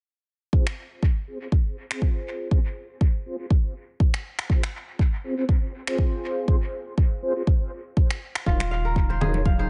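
Earthy afro house at 121 BPM in F phrygian, with a lightly swung 16th-note feel, cut from a longer piece in which mellow synth brass stabs, dark and detuned with chorus, vibrato, dub echo and sidechain pumping, sit over an up-front, tape-warm electronic kick from 0.5 seconds, joined by softly echoed finger snaps at 0.7 seconds. At 8.5 seconds the chord moves from Fm to Ebm7 as a crisp, ringing fingerpicked kora arpeggio, a round sine sub bass on Eb1 and close, dry congas struck with hard hands arrive together. An ethereal, airy pad with ensemble chorus and phaser drifts in behind them at 8.8 seconds, all inside an echo-heavy, dark-topped digital ambience.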